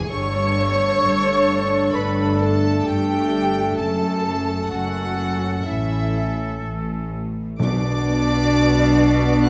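A rubato 4/4 pulse carries this longing, bittersweet cinematic orchestral cue, cut from a longer piece, in which a clear violin section sings the high melody over floating second violins, dark, woody violas, an airy flute, a warm clarinet, a solo oboe that falls silent at 7.2 seconds, a mellow horn section holding sustained chords, and rich cellos and double basses beneath, the strings all bowed sul tasto, until round, soft-mallet timpani enter at 7.6 seconds, the whole ensemble set in a moderate scoring-stage reverb.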